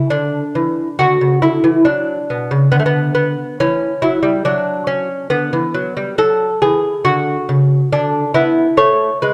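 A solo lute opens this short piece of classical music, a serene, baroque-style dance in triple time that is cut from a longer work. Fingerpicked on gut strings, the instrument has a mellow, delicate voice, its double courses and octave-doubled strings adding a gentle shimmer. The playing moves with a relaxed rubato, and the harmony drifts from an open Dsus2 through B minor and a rich Em13 before settling onto D and closing on a bare A5 at 8.8 seconds. The lute sits up front in a dark production, surrounded by the moderate reverb of a recital hall. The result is calm and graceful, a brief dance phrase that ends at 9.3 seconds.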